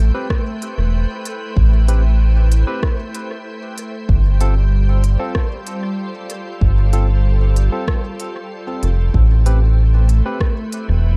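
A round, dark analog bass with tube saturation sits up front in this hazy, spacious ambient dub excerpt at 95 BPM in A minor, beneath an overdriven, deep electronic kick, a crisp-hatted electronic kit with rim clicks and dub echo, barky tine electric piano stabs trailing their own echoes, and a soft, pure organ-like pad holding sustained chords with ensemble chorus through Am7 and G7sus4, the whole mix steeped in echo-heavy digital ambience.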